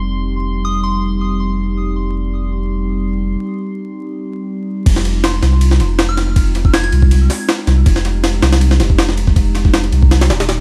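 A warbling, nostalgic pad holds dark sustained chords over a thick, saturated sub bass, while a glassy, drifting texture hovers high above until a break at 3.4 seconds, and a soft, pure synth bell with phaser and tape echo places gentle melodic touches in F minor at 160 BPM. At 4.9 seconds the drop lands on Fm7 as a gritty, pitched-up jungle sampler kit enters up front, its thumpy kick, high-tuned snare, hi-hat, ride and crash overdriven and compressed with a lightly swung 16th feel. The raw, dark drum and bass fragment sits in an echo-heavy digital ambience dusted with vinyl crackle.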